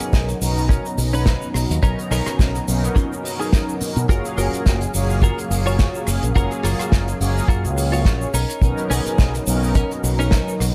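A lightly swung sixteenth-note groove in 4/4 drives this sunny, feel-good nu-disco excerpt, cut from a longer piece. An unplugged drum kit played with bundle sticks opens the excerpt with hi-hat, rim click, shaker and a medium-tuned snare, all with an airy, polished small-room sound, and a punchy, up-front kick drum joins at 0.1 s. A fingered electric bass runs through an envelope filter with tube saturation and sidechain pumping, giving a warm, direct, punchy low end. A clean, twangy, picked electric guitar, recorded direct and compressed, plays a bright riff with analog chorus and delay. Mellow synth brass, built from detuned sawtooth and square waves with a sub octave, fast attack, vibrato and a filter sweep, sustains brassy chords over Bmaj9 and F#maj7, pumping with sidechain and colored by chorus and delay.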